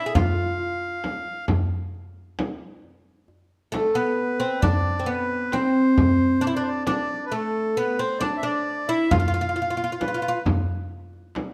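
In a straight 10/8 pulse, this longing, soulful excerpt of Arabic maqam ensemble music places a bright, woody, plectrum-plucked fretless oud up front on the melody, with a reedy, airy accordion as a softer second line until both stop at 10.4 seconds, while a deep frame drum, also up front, and a crisp metal-shell darbuka played with soft hands carry on to the end in a moderate recital hall reverb captured by close, detailed microphones.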